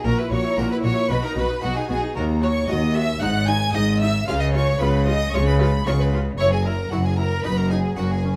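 Dramatic and driving, this brief excerpt from a longer baroque-style concerto movement moves at 114 BPM in a straight 4/4, with a distant solo violin singing the melody with expressive vibrato and portamento. A high chamber violin section also carries a melody above it, while a second violin section and a viola section fill in smooth, focused lines in the background over a plucked, brilliant, close-miked harpsichord. The bowed cello section and an up-front double bass section anchor the bass beneath chords that run from F#7/A# through D#m and C#7 to B/F#, all in a light reverb.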